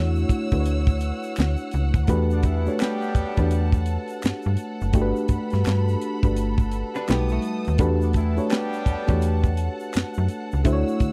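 This smooth, introspective neo-soul and R&B excerpt moves at 84 BPM in 4/4 with a swung sixteenth-note feel, settling in E dorian. A tight funk drum kit with a high-tuned snare, tight kick, hi-hat and handclaps sits up front from 0.3 seconds, alongside an egg shaker and finger snaps that enter just before it at 0.2 seconds, set back in the background. Underneath, a snappy, slap-like FM bass with a metallic attack anchors the low end, while a round, full-bodied FM electric piano with chorus carries the chords from Dmaj9 through Em11 and Gmaj9 to a B7b13 before settling back on Em11. A lush, woody string section holds sustained chords high above, and a clear horn section with octave doubling adds tight stabs from 2.3 to 9.5 seconds. A hollow-body archtop guitar, clean and picked, slips in briefly as a second line near 7.0 seconds, all within a dry, close 1970s-style studio sound with small room ambience.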